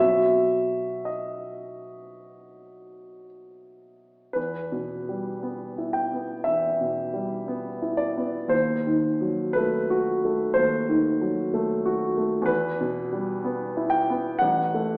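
A polished grand piano carries this wistful, melancholic romantic nocturne, cut from a longer piece, in a freely breathing rubato that leans from the opening chords into a diminished harmony and back, set in a wet recital hall reverb and heard from further back in the room through a thin, AM-radio-like sound.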